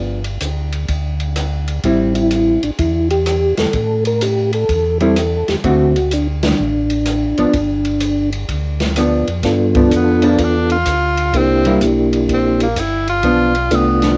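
Swinging eighths drive this greasy, soulful soul jazz organ trio excerpt from a home cassette recording: a mellow tonewheel organ with slow rotary speaker and key click holds down the bass, a clean hollow-body jazz guitar accompanies up front, and an open, natural drum kit with dark cymbals and a boomy kick sits in a small room, while a soft, flute-like percussive organ takes the melody from 1.8 s, the band hits an accent at 6.4 s, and a bright tenor saxophone with scooped notes and vibrato enters at 10.0 s to solo.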